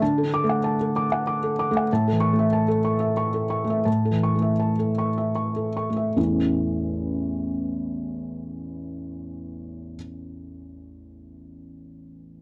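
A dry, close, 1970s-style studio sound frames this short excerpt of hopeful, peaceful neoclassical minimalist piano in A major and 3/4, where a solo felt-muted upright piano, mellow and intimate with thick felt, audible action noise and an up-front presence, plays with rubato between 72 and 96 BPM, moving from a D chord to A, slowing down through its opening passage, and shifting into a new section at 6.2 seconds.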